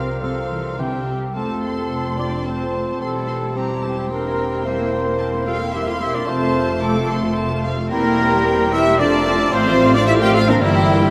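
In a quick, straight 3/4 at 110 BPM, this spirited, graceful classical-period movement in F major, cut from a longer piece, sets a smooth, rich violin section on the melody above a second violin line, an airy flute section, a distant clarinet and a background oboe with light vibrato. A bassoon and a lush viola section with portamento fill the accompaniment while a dark cello section and an expressive double bass section hold the bass. From 0.8 seconds a very quiet French horn section sustains chords and a roomy trumpet adds stabs, all bathed in the echo of a vast cathedral reverb.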